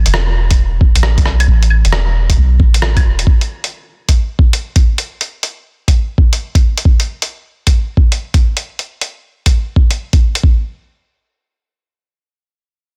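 A soft 808-style bass opens this rainy, wistful future garage excerpt at 134 BPM, its deep, round sine tone pumping under sidechain before it stops at 3.3 seconds. A thumpy, muffled electronic kick drum sits up front from 0.5 seconds, while a lo-fi sampler-style kit adds claves, hi-hat and rim click with a 65% swing on the sixteenths, its snare softly clipped and both drum parts touched with studio reverb. The dense, heavily limited mix stays dry overall, and the drums stop by 10.6 seconds as a new section begins at 10.4 seconds.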